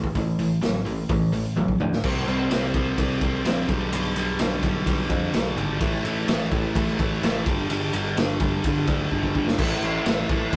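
Classic rock with a gritty, swaggering mood, this straight 4/4 clip is cut from a longer piece and lasts about ten seconds. A double-tracked, overdriven electric guitar drives the riff up front, its picked tone warm, moving from A5 through C5, G/B, A5 and G5 before landing back on A5. Beneath it, a bright, growly picked electric bass sits low with a direct sound. A raw garage drum kit plays throughout, with a punchy kick, medium-tuned snare, hi-hat, ride, crash and toms, all saturated and rolled off at the top, with a pumping small-room character; fills arrive at 1.6 and 9.1 seconds. The whole take has the rough feel of a rehearsal room, tinged with tube saturation and a moderate studio reverb.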